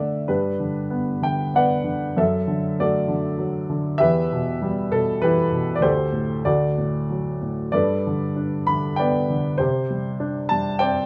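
A warm baby grand piano carries this brief classical solo, sitting up front with a natural tone across a range from D2 to B5. The mood is bittersweet and moody, set in G major in 3/4 at around 97 BPM, with a rubato feel that lets the phrasing breathe. A short fill opens the passage before the lyrical line settles in at 0.3 seconds. The harmony moves from G through D/F#, Em, Dsus4 and D, then reaches Gadd9 at 7.7 seconds and moves on to Csus2 at 9.6 seconds. Moderate studio reverb gives the instrument a gentle sense of space, and the passage is cut from a longer piece, ending at 11.1 seconds.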